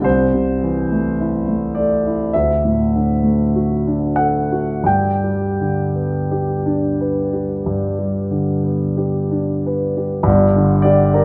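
Rubato phrasing stretches a slow 4/4 pulse of roughly 42-55 BPM, giving this short excerpt from a longer romantic nocturne a tender, serene drift. A single warm concert grand piano carries the whole piece alone, ranging from a deep bass at G1 up to G5, and it sits up front with a long, lingering sustain. The harmony in G major moves from Am/C through D to a resolution on G at 4.9 seconds, then lands on G5 at 10.3 seconds before the excerpt ends at 11.2 seconds. A wet recital hall reverb with a 1.6-second decay surrounds the instrument, and the production leans dark and warm, suiting the music's tender, serene character.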